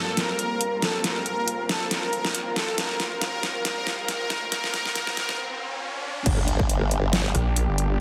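Menacing and heavy, this heavy wobble dubstep excerpt at 138 BPM in G minor builds over a veiled, con sordino string section with sidechain pumping, a smooth phased supersaw melody with dub echo, a very quiet riser and impact, and an overdriven drum kit with a deep snare, then breaks at 5.4 seconds before dropping at 6.3 seconds into a punchy overdriven kick and a chorused formant-sweep wobble bass, which gives way at 7.3 seconds to a snarling, distorted, growling saw bass, all set in a lush hall reverb with a heavily compressed radio sound.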